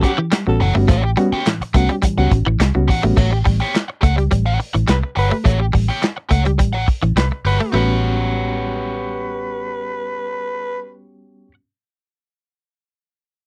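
A muffled soul drum kit with handclaps drives this playful, gritty funk excerpt until 7.6 seconds, over a round, foam-muted electric bass entering at 0.5 seconds, while a twangy clean guitar riff, a wah-treated overdriven guitar, fast-tremolo reed electric piano stabs with slapback echo, and a raspy, growling tenor saxophone line returning at 4.9 seconds fill out a dry, close 1970s-style studio sound.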